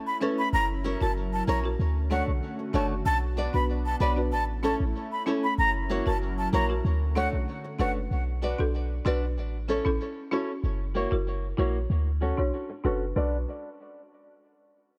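A deep, boomy 808-style bass sits up front in this bouncy, hypnotic dancehall excerpt at 95 BPM in B minor, beneath a chorused analog pad of detuned sawtooth chords and an airy, chiffy concert flute melody with delay. A woody folk marimba and a fingerpicked flamenco guitar with old strings supply accompaniment and arpeggios through low-pass filters, the guitar also carrying delay, as the harmony cycles through A, F#7, Dmaj7 and Bm. The pad ends at 8.1 seconds, where a filter sweep begins and runs to 13.2 seconds, over light reverb and studio ambience.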